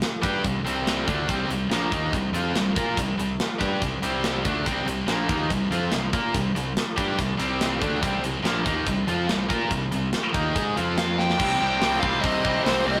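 A rough rehearsal-room recording with moderate stone-room reverb frames this menacing, driving hard rock cut, where a tight metal drum kit with bright cymbals and a tight kick pounds out a straight beat. An up-front scooped high-gain guitar and a crunchy overdriven guitar play picked riffs over a growly, fuzz-laden fingered bass. Near the close, a dark, smooth overdriven lead guitar enters at 11.0 seconds, a drum fill follows at 11.2, and a very quiet double-tracked heavy guitar joins at 11.4.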